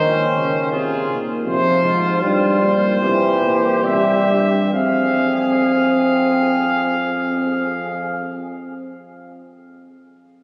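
Contemplative and serious, this imitative brass canzona in F minor moves in a straight 4/4 at 66-85 BPM, slowing down over its first 4.7 seconds as the harmony passes from Bb minor through C suspended to C and settles on F minor. A warm, soft-attacked trumpet carries the melody up front, joined by a mellow, distant flugelhorn with vibrato on the second line, a euphonium with light vibrato in close, prominent accompaniment, and a clear, vintage-toned tuba on the bass, all four playing throughout. The sound is drenched in a long cathedral reverb and captured on a phone in the room with added studio reverb and compression, cut from a longer piece.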